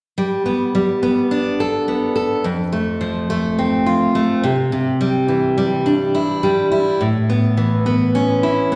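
Anthemic and cathartic, this short rock passage, cut from a longer piece, moves at 105 BPM in a straight 4/4. A picked steel-string acoustic guitar carries it from 0.2 to 8.8 seconds, playing arpeggios that range from F2 to A4. Its tone is warm and up front, with audible finger squeak and a slapback echo that gives each note a quick shadow. The chords pass through Gadd9, F, Cadd9 and Aadd9, their added colour tones lending the progression an open, hopeful lift. The sound comes from a live gig heard through the venue's PA, framed by a moderate club reverb and the auditorium character of a recital hall.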